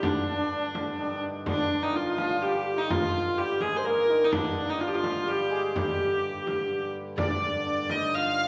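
A smooth, even hurdy-gurdy carries the melody up front, its wheel-bowed, keyed tone leading this driving, mysterious medieval dance in a steady three-beat metre. Beneath it, a hammered dulcimer adds a shimmering, ringing second line, while a very quiet tenor recorder traces another line with an airy, woody chiff and gentle vibrato. A hand-pumped harmonium holds a low, reedy drone that seems to breathe under the ensemble. A deep, vintage-sounding frame drum with a band-limited tone keeps the pulse until it stops at 8.1 s. The main phrase comes round again at 7.2 s, and the players sit in the generous reverb of a church or concert hall, giving this brief cut from a longer piece a resonant, candlelit atmosphere.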